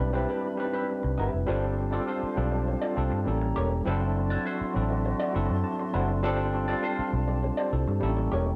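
A straight 4/4 soul groove, cinematic and smooth, cut from a longer piece. It rides on a round, foam-muted electric bass sitting up front, beneath a worn, slightly out-of-tune tine electric piano with light overdrive that adds a fill from 5.1 to 6.2 seconds, and a picked, lo-fi guitar riff through a small old amp with wah. A distant, airy flute section holds hollow, vibrato-tinged chords as the harmony moves from Cmaj7 into G9sus4 at 1.5 seconds, then through A7b9 and D9/F#, all in a dark production with light digital reverb.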